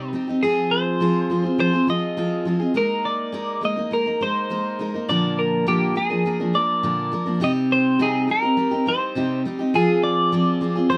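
From the opening moment a full-bodied, picked steel-string acoustic guitar with audible finger squeak plays accompaniment while a bright, clean, compressed twelve-string electric guitar carries the melody up front, the two moving through Fm, Absus2, Bb and Cm in a wistful, tender pop fragment set in a moderate studio ambience.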